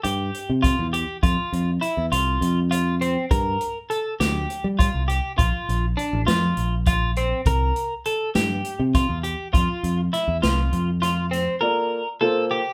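A bright, clean twelve-string electric guitar plays compressed, up-front arpeggios in this driving, intricate progressive instrumental, cut from a longer piece in 7/8 at 202 BPM (eighths), over a growly picked electric bass and a swinging big-band drum kit with a boomy kick and medium-tuned snare in a wet small room, until the bass and drums stop at 11.5 s and a dark, boxy grand piano enters on a Bbmaj7 chord at 11.6 s.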